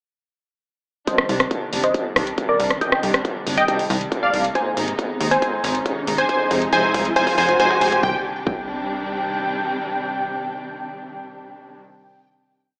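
Bittersweet and emotional, this short uplifting trance piece builds from 1.1 seconds and resolves at 8.0 seconds onto a held final chord. An up-front, detuned supersaw stab carries a repeating riff in thirds and sixths through a filter sweep, sidechain pumping and digital delay, over dark, bowed symphonic strings holding expressive sustained chords. Beneath them, a distorted four-on-the-floor electronic kick sits in the background alongside a techno kit of metallic programmed hats and rim clicks, while a punchy, plucky analog bass with tube saturation plays off-beat. A riser enters at 3.4 seconds, and a drum fill from 4.6 seconds leads to the final chord, all bathed in a lush hall reverb and an AM radio sound.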